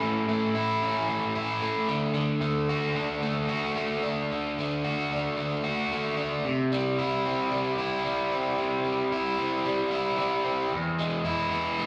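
A bright, overdriven electric guitar opens this swaggering rock fragment at 0.0 s and carries it alone through to 11.9 s, at a driving 112 BPM in a straight 4/4. The picked part is double-tracked and compressed, sitting up front and ranging from E2 to F#4. Slapback and tape echo trail its lines. The harmony moves from A to D, then to C at 6.4 s and E at 10.7 s, lending the short passage a driving push. It sounds like a live gig heard through the venue's PA, with a light club reverb around the guitar and the feel of a snippet lifted from a longer performance.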